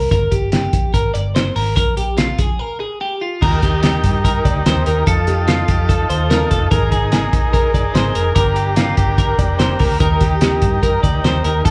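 A live club sound comes through the venue's PA with moderate reverb, as this excerpt of nostalgic, youthful jangly indie pop moves at 146 BPM in Eb major. A bright, twangy twelve-string electric guitar plays up-front arpeggios with slapback echo over a round, foam-muted vintage bass and a cloth-damped drum kit that sounds thuddy and lo-fi, with a fat snare and dark cymbals. After a break at 2.6 seconds, a buzzy combo organ with heavy vibrato and slapback echo joins at 3.4 seconds as the chords move from Eb through F7 and Absus2 to Gm.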